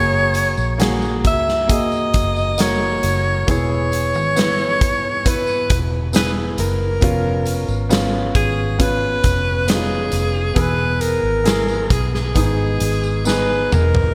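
A straight 4/4 pulse at 67 BPM carries this longing, emotional pop ballad, cut from a longer piece, where a clear, close-miked alto saxophone sings the melody up front with jazz-style vibrato over a woody upright piano with audible action noise, a dark, round, foam-muted electric bass, a very quiet jingly tambourine and a huge arena drum kit with punchy kick and gated reverb that enters at 0.3 seconds and closes with a fill from 13.3 seconds, set in a lush hall reverb with bright 1980s-style digital production.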